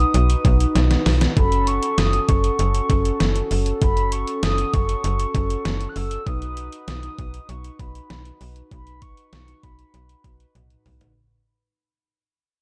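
A straight 4/4 pulse at 98 BPM comes from a detuned 8-bit digital drum machine, whose thumpy kick, medium-tuned snare, hi-hat and toms are overdriven and sit up front with a small-room character, with a drum fill at 0.8 seconds. This wistful, nostalgic synth-pop piece in B mixolydian is cut from a longer work and fades out across its whole length. A slap-like FM bass with a snappy, metallic attack and decaying notes holds the low end up front. Mellow synth brass with a round sawtooth tone and chorus sustains the accompaniment, while a horn-like synth lead with a soft attack, vibrato, chorus and tape echo carries the high melody until 10.6 seconds. The harmony moves from B to F#m at 1.4 seconds and back to B, and light reverb frames a dark, warm production.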